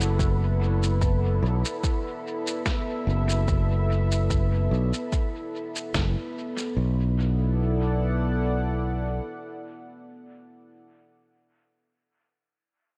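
A smooth, chorused analog pad holding a Bm7 chord opens this deep, meditative ambient dub fragment alongside a growly, up-front fingered electric bass, a muffled, pitched-down electronic shaker and snare trailing dub echo, and a breathy, wind-like tuned noise texture carrying its own reverb far in the background, while an overdriven electronic kick joins at 0.2 s, the drums and texture fall away by 6.8 s, and the bass stops at 9.2 s, leaving the pad alone in an otherwise dry room with a lazy sixteenth-note swing.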